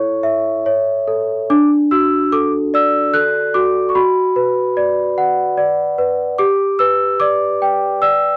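In a gently rubato three-beat sway, a large celesta plays alone throughout this sleepy, tender children's lullaby fragment, its bell-like, sweet tone struck with hard felt hammers ringing up front from D4 to F#6 over chords moving from A to D, Bm and G, all captured in a dry, close 1970s-style studio sound with light reverb.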